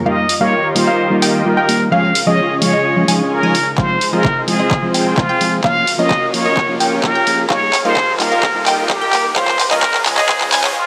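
A bright, breathy trumpet with plunger mute carries the jazz-style lead up front, its scooped notes and wah-wah tone trailing digital delay, over a festival progressive house build-up at 129 BPM that feels anthemic and euphoric. Beneath it, huge detuned supersaw chords and a cassette-tinged pluck arpeggio both move through filter sweeps, while a dark, clean fingered electric guitar and a thick, warbling pad pump with the sidechain around a chord cycle of Ebadd9, Db, Fm and Bbm/F. A pop kit with handclaps and hi-hats plays from 0.3 seconds, a punchy electronic kick and a drum fill arrive at 3.8 seconds, and a very quiet riser enters at 2.2 seconds, all bathed in a huge ambient reverb in this short cut from a longer piece.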